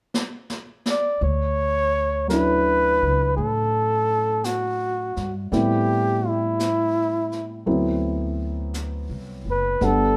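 A late-night, romantic jazz ballad excerpt in a gentle swing opens with a brushed fill on a distant, roomy drum kit before a mellow, up-front flugelhorn enters at 0.9 seconds with a smooth, lightly vibrato-tinged solo line, joined at 1.2 seconds by a thumpy, gut-strung pizzicato upright bass and at 2.3 seconds by a woody upright piano, all set in light reverb over lush Dmaj9, Am9 and D13 harmonies.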